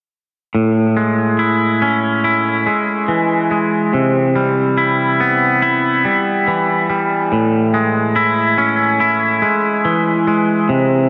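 Soaked in a lush hall reverb with a long 2.8-second tail, this cut from a longer piece has a dreamy, cinematic glow. A lone twangy electric guitar sits up front, clean and compressed, picking arpeggios from 0.5 to 11.1 seconds across a range of A2 to E4. A subtle chorus and a diffuse ambient delay add shimmer to the guitar's tone. It is slow, straight-feel rock at 71 BPM in 4/4, in A major, with tuning set to A4 = 444 Hz. The harmony moves from Amaj7 to Cmaj7 and back to Amaj7, giving the passage a hopeful, open-ended character.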